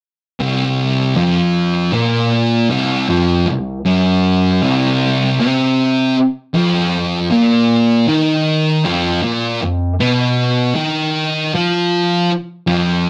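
The recording has a rough, rehearsal-room quality, with a moderate studio reverb giving the sound a short tail. This excerpt from a longer metal piece has a hypnotic, brooding mood and a steady, straight feel in four. A thick fuzz guitar takes the solo from 0.4 seconds to the end, picked, double-tracked and placed up front in the mix. Its dark, distorted tone fills a range from deep low notes to the upper middle. The harmony rests on an F#maj7#11 over B# before moving to Bmaj7#11 over E# at 6.2 seconds, lending the passage an uneasy, suspended colour.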